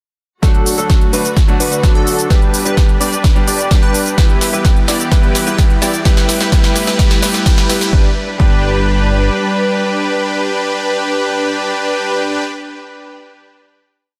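Punchy, up-front four-on-the-floor kick drives this triumphant, anthemic festival progressive house piece at 128 BPM in G major, where huge, detuned supersaw chords swept by a filter lead the build with cassette-tape colour, delay and sidechain pumping over a clear concert grand piano, a rich bowed string pad, a catchy square-wave plucky lead doubling the chords, a very quiet fat analog bass, crisp programmed hats, cabasa and snare, and a faint riser from 4.8 s, before the drum kit drops out at 7.9 s, the kick follows at 8.5 s, and a final G chord rings until about 12.5 s.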